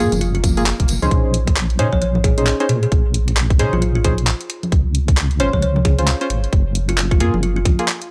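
A dry, close-sounding cut from a longer skippy, late-night two-step UK garage track at 133 BPM in Bb minor, swung 16ths, where a tight, up-front electronic kick and an overdriven garage kit of congas, finger snaps, handclaps and hi-hat sit alongside a dark, wobbling sawtooth-and-sine bass with chorus, mellow evolving chord stabs with a filter sweep, chorus and delay move through Gbmaj9, Bbm11 and Dbmaj7, a woody, bright kalimba plucks a short delayed melody, and a jingly tambourine and background electronic swell appear only in the first 1.1 seconds.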